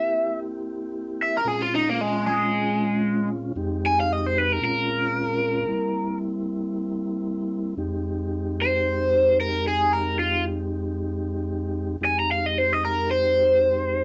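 A crunchy, overdriven electric guitar leads this brooding, mournful blues in F minor, its bright, picked solo carrying the melody from the opening through 7.8 seconds. Beneath it, a mellow tonewheel organ supplies soft, flute-like accompaniment through a slow rotary speaker, while the guitar is colored by a phaser. Both parts sit up front, playing together for the full 14 seconds in 4/4 at 114 BPM with a light swing on the sixteenths. The harmony moves through C7, Bbm7 and Fm7 before settling on Fm7 at 7.8 seconds as a new section begins. The band sounds as if playing live in one room, with a moderate studio ambience around it, in this brief portion cut from a longer piece.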